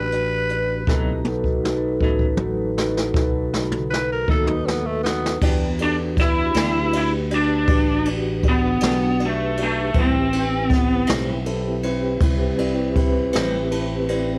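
A raspy, growling tenor saxophone solo opens this brooding, smoky slow blues in E minor at 53 BPM in 12/8, over a dark baby grand piano, a soft flute-like tonewheel organ turning through a slow rotary speaker, a punchy fretless bass with lush chorus, boomy brushed drums and a clean, tremolo-touched semi-hollow guitar, before an overdriven, lo-fi lead guitar takes the melody from 5.8 to 11.1 seconds, all captured as a small-room cassette home recording cut from a longer piece.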